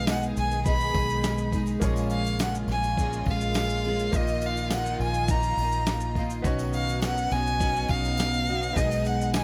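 A reflective, tender acoustic pop excerpt opens with an expressive bowed violin melody, close and up front with vibrato, portamento and a touch of delay, over a full-bodied, double-tracked picked steel-string acoustic guitar, a bright grand piano in the background, a lush studio string section holding sustained chords in the background, plus a dark, round, foam-muted electric bass, joined at 0.1 s by a gritty, compressed sampler-style drum kit with a thumpy kick and a very quiet jingly tambourine, set in light reverb.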